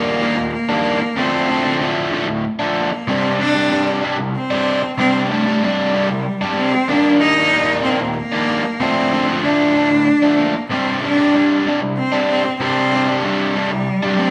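A single bowed cello carries the melody up front in this cathartic, cinematic rock passage, its woody, close tone colored by vibrato and a dark edge. Beneath it, an overdriven electric guitar plays a picked riff that is double-tracked and compressed, standing just as far forward as the cello. Both parts sound together for the full 14.3 seconds of this section cut from a longer piece, moving in a straight three-beat metre. The harmony cycles twice through Ebmaj7, Dm7 and Csus2, lending a brooding, suspended quality to the guitar's low register. The duo plays live in one room, and a wet, large studio reverb gives the sound a spacious, dramatic glow.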